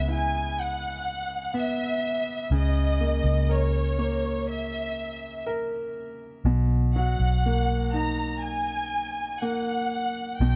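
A dark, warm production frames this heartfelt, tender pop ballad fragment at 61 BPM in B major, where a lush, vibrato-rich symphonic violin section carries the melody over brilliant, polished concert grand piano accompaniment moving from C#m7 to Bmaj7 and a round, punchy, foam-muted electric bass, all three parts sounding throughout the 10.6 seconds.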